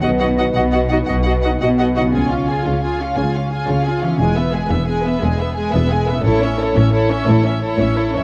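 Set on a scoring stage with moderate reverb, this triumphant, adventurous cinematic fragment in 12/8 features a smooth symphonic violin section with light vibrato carrying the melody. Beneath it are a close studio violin second line, intense, lush violas, and a rich cello and double bass foundation, while a mellow, ringing harp plays arpeggios throughout. In the opening moments an airy flute ensemble, a clear oboe and a French horn section, both in the background, add a second line and held chords, joined at 0.4 s by a bright, tight trombone section, before the winds and brass stop by 2.0 s and the strings and harp carry on into a new section from 2.1 s.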